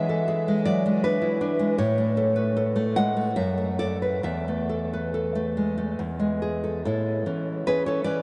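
A fingerpicked nylon-string guitar carries this short romantic fragment alone, its fresh strings ringing warmly through the classical playing. Cut from a longer piece, it moves in an unhurried 3/4 at roughly 66-80 BPM with a rubato feel, wandering through A major over a range from E2 to F#5. The harmony opens on E7 and passes through A, D/F#, A5/E and E before settling back on A at 6.9 seconds, where a new section begins and runs until the guitar stops at 8.2 seconds. Although the guitar sits up front, it is bathed in a diffuse ambient delay and an enormous reverb with a 9.0-second tail, so each note blooms into a dreamy haze. With its highs gently rolled off, the sound feels hazy and nostalgic, like a half-remembered serenade.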